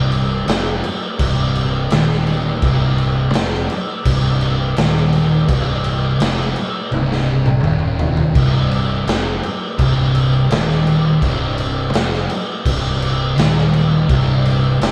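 Light reverb surrounds a band playing live together in one room, giving this clip from a longer stoner and doom metal piece a heavy, hypnotic weight. At a straight 84 BPM in 4/4, two thick fuzz guitars grind out a low picked riff in C minor, their distorted tone sitting in the background. A growly fingered electric bass, overdriven and heard both direct and amped, holds down the low end deep beneath them. Up front, a raw acoustic garage kit enters at 0.1 seconds with a punchy kick, a medium-tuned snare, toms and shadowy crash cymbals, its rolled-off top ringing in a bright stone room. The drums break into a fill from 6.9 to 8.3 seconds before the riff rolls on over the single C minor chord.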